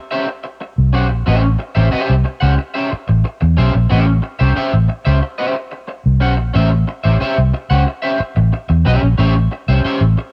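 Playful and gritty, this short funk clip cut from a longer piece in a straight 4/4 pairs a picked, twangy electric guitar on the edge of break-up, lush with chorus and sitting up front as accompaniment over an A7#9 chord from 0.1 seconds, with a dark, round, foam-muted vintage fingered electric bass that comes in at 0.8 seconds, all captured dry as a home cassette recording.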